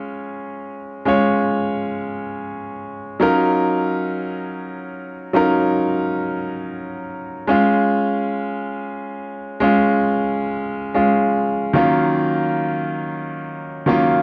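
A clear, natural grand piano plays alone up front in free time, moving between Db and Ebm9 chords in Eb minor, tuned slightly low at A4 = 438 Hz, for a sultry, glamorous disco passage cut from a longer piece, bathed in the wet reverb of a large studio and shifting into its second section at 3.2 seconds.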